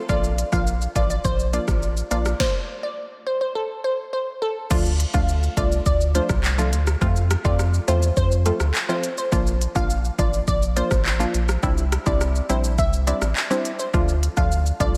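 A straight, even dancehall groove in four drives this summery, sunny fragment of a longer piece, built on an electronic afro-pop kit with a deep kick, sharp snare, smooth hats, handclaps, rim clicks, shaker and crash cymbal, all sitting up front with a tape-warm finish. Underneath, a round analog bass holds the low end, dark and sustained with a quick attack and a pure, sine-like tone. A crisp, warbling wavetable chord stab supplies the accompaniment in short, vintage-flavoured hits, while a glassy, crystalline wavetable pluck carries the melody, its filtered, decaying notes dressed in chorus and analog delay. After an opening on Bb, the groove breaks off between 2.4 and 4.7 seconds over a moment of silence in the harmony, then returns into a new section that cycles Dm, F, Bb and Cadd9 before landing back on Dm. Light reverb and digital ambience give the mix a sheen of space.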